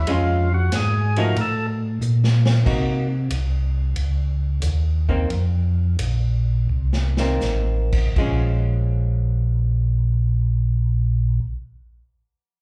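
This smoky, late-night soul jazz organ trio in Bb minor opens on a thick, lightly overdriven percussive organ melody with key click, slow rotary speaker and slapback echo. It plays a short opening solo, its melody ending at 1.7 seconds, over a clean, hollow-body archtop guitar with its own slapback echo and a round, dark organ bass line sitting up front. A distant, roomy big-band drum kit with a punchy kick swings the 8ths at 79-93 BPM. It adds fills at 2.0 and 6.7 seconds as the tempo slows down from 2.7 seconds, then drops out at 8.4 seconds. Heard through a club PA in this cut from a longer live gig, the guitar and organ bass carry on to the close on a return to Bbm7.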